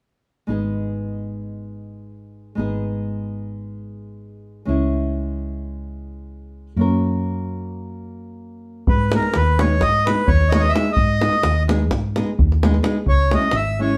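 A reedy, airy accordion with a dry tuning carries the melody of this bittersweet, virtuosic Balkan wedding-band tune, entering up front at 8.9 s to take the lead. It arrives together with a tight, close davul. Before that, the piece opens as a fingerpicked nylon-string guitar, warm and small, and a dark, round, amped hollow-body electric bass, both up front, laying out the harmony. The music moves in a straight 9/8 at 258 BPM counted in eighths, in G# minor with the tuning set to A4 = 439 Hz. The chords travel from G#m through C#m to F#, then return to G#m before turning to C#m again near the close. The band sounds as if it is playing live in one room, wrapped in a short, wet studio reverb, and the passage is cut from a longer piece.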